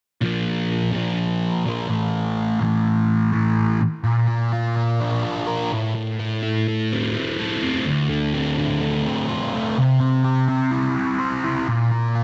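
Rock at 126 BPM in a straight 4/4, this short cut from a longer piece has a hypnotic, mysterious mood carried entirely by a lone fuzz guitar. The electric guitar is picked and double-tracked, sitting up front with a warm, distorted fuzz tone colored by a phaser, and it ranges from D2 up to C5. It opens on Bb5 and A5 power chords before moving at 4.1 seconds into a new section that works through Bb, Am, Dm7 and C. The harmony returns to Bb5 at 11.7 seconds, just before the guitar stops at 12.2 seconds. A light reverb surrounds the part, and the recording's top end is rolled off above 8.0 kHz.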